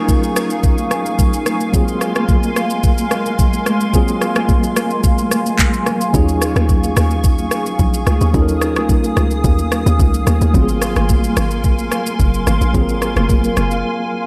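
A dreamy, reverb-soaked amapiano excerpt at 109 BPM with a late-night, soulful mood, where a mellow tine electric piano accompanies Ebm11 and Ab13 chords that a hollow, flute-like pad with ensemble chorus and sidechain pumping sustains, over a smooth, up-front electronic R&B kit of knocking kick, handclaps, rim click and shaker, distant high-tuned congas, and a bouncy, percussive log drum bass that enters at 6.1 seconds before a brief break at 13.8 seconds.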